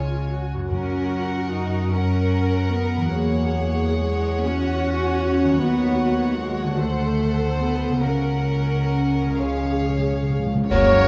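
A pure, floating violin section carries the tender melody of this slow, rubato romantic orchestral movement in 6/8 and F# major, joined by a clear second violin line, dark, woody violas with vibrato, rich cellos, an up-front double bass section played sul tasto, and a ringing fingerpicked harp in the background. Timpani with medium mallets mark the opening and return at 8.1 seconds alongside dark cymbals, a cymbal swell and concert bass drum, moving through a timpani fill into a full accent at 10.7 seconds. That accent brings in a bright flute, a smooth-topped oboe, a shadowy clarinet, a very quiet bassoon, and sustained chords from mellow French horns and a tight trombone section, all set in a moderate scoring-stage reverb with a warm, dark production.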